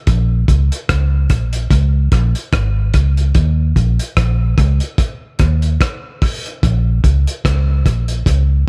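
A slow, lightly swung 4/4 roots reggae groove from a cloth-damped, thuddy drum kit of hi-hat, tight kick and rim click, muffled and gritty with a rolled-off top and tape echo, sits up front beside a dark, round, foam-muted vintage fingered electric bass in a low register, creating a hypnotic, serious mood in a dry, lo-fi small-room sound on this short cut from a longer piece.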